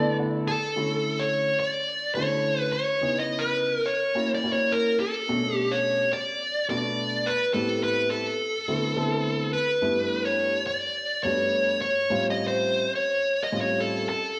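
The recording sounds like a live club gig heard through the venue's PA, with a light small-room reverb and a club ambience around the players. It is a slick, bright jazz passage cut from a longer piece, swinging at 106 BPM in 4/4 in D major. A baby grand piano plays a short fill at the start before the main section settles in at 0.8 seconds. Up front, a dark, overdriven electric guitar carries the picked melody, colored by slapback and tape echo. Also up front, the piano's long-sustaining accompaniment has its own slapback echo and moves through Dmaj7, C#m7, F#7, Bm9, Am7, D13 and G6 before landing on A7alt, with the piano stopping at 14.1 seconds.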